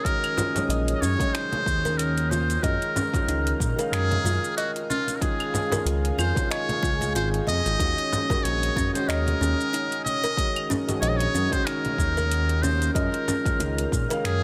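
A swung sixteenth-note groove in 4/4 drives this mystical, warm stretch of organic downtempo, cut from a longer piece. An overdriven electronic kick gives a deep thump, joined at 0.1 seconds by a tape-toned deep house kit of claves, finger snaps, metallic hi-hats and shaker, while bright, band-limited congas and bongos sit in the background with hard hands. From 0.7 seconds a smooth sawtooth-and-square synth bass glides up front with portamento, tube saturation and a sidechain pump. Over this, a muted trumpet with a metal mute carries the jazz-style solo melody, buzzy and breathy with light vibrato, trailed by delay and shimmer reverb. Beneath it, a felt-muted upright piano adds dark, intimate accompaniment with audible action noise and 12-bit sampler grit, and a detuned, warbling analog pad holds sustained chords in the background, while a woody kalimba plucks short arpeggios through delay and shimmer. 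The harmony moves through Ebm7, Gbmaj7 and Db before returning to Ebm7 and then moving on to Gbmaj7.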